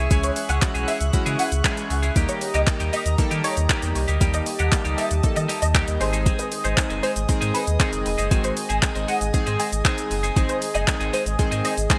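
The twangy, clean twelve-string electric guitar rides its bright picked riff over a smooth, up-front R&B drum kit of soft kick, hats, handclaps and shaker in this energetic, driving dance-pop excerpt at 117 BPM, moving through C#m, D# and G#. A deep, full sub bass with octave and glossy chorused retro synth keys with a filter sweep pump under sidechain, as does a shimmering, evolving pulse-width pad holding sustained chords. A lush, detuned unison pluck carries the melody in the background through ensemble chorus and digital delay, all set in light digital ambience with a bright 1980s-style sheen.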